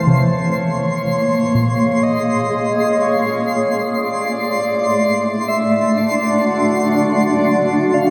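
This ambient excerpt opens with a cloudy, blurred granular pad holding sustained chords up front, while a round, dark pluck traces arpeggios beneath it and a twinkling, bright granular texture hovers high above. A breathy, flute-like synth lead enters at 0.1 seconds, its warbling, vintage tone carrying a soft melody with vibrato, subtle chorus and a diffuse ambient delay. The harmony moves from Bbm7 to D, and the pluck, with its own chorus and delay, falls away at 4.5 seconds, leaving the pad, the sparkling shimmer and the lead to carry on. The mood is warm and luminous, at an unhurried, straight pace in 4/4. Everything sits in a vast, echoing space with a long cathedral reverb that lets each sound linger and melt into the next.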